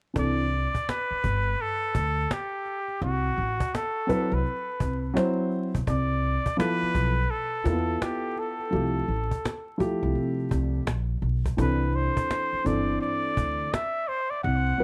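A breathy, nasal trumpet with a straight mute carries the melody with light vibrato, close and intimate, over a dark, mellow concert grand piano, a woody pizzicato upright bass and a snappy cajon played with soft hands, in this warm yet cool jazz-hop excerpt at 84 BPM with a swung sixteenth feel in C major, moving through C6/9, Am6/9, Dm13 and Fmaj9 chords beneath a layer of vinyl crackle, with plate reverb on the piano and trumpet and analog delay trailing the horn.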